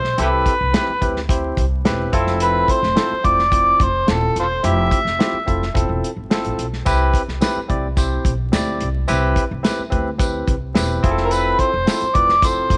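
Uptempo 1960s-style soul with a joyful, straight 4/4 feel, heard in a short clip cut from a longer piece. An overdriven, gritty harmonica carries the melody up front in a jazz-style solo, full of tongue slaps, scooped notes and light vibrato; it plays until 5.8 seconds, drops out, then returns at 11.2 seconds. A soul drum kit with a tight kick, medium-tuned snare, hi-hat and a rolled-off top sits up front in a small room, while a woody, dark pizzicato upright bass anchors the low end. A bright, barky tine electric piano accompanies cleanly, and from 6.9 seconds a jingly tambourine adds sparkle from a distant, larger space in the background. The harmony moves between Cmaj7 and Fmaj7 under light reverb and a small room ambience, with vinyl crackle giving the sound a vintage patina.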